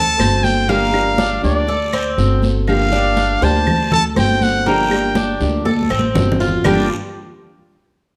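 Drenched in a large studio reverb, this short clip from a longer piece has a sultry, nostalgic glow, moving at 121 BPM in a straight 4/4 rooted in G minor. The groove is Cuban son and guajira, alternating between D7 and Gm7. Up front, a brilliant solo trumpet carries the melody in a pop style, with vibrato and scooped notes. Beneath it, the Cuban tres picks metallic arpeggios on its doubled strings, and an upright bass plays dark, woody pizzicato lines. From 0.2 s, a bright nylon-string guitar adds fingerpicked classical accompaniment, joined by high-tuned, ringing congas under soft hands, very quiet claves and a raspy guiro in the background. A fill at 5.7 s leads into a new section at 6.7 s.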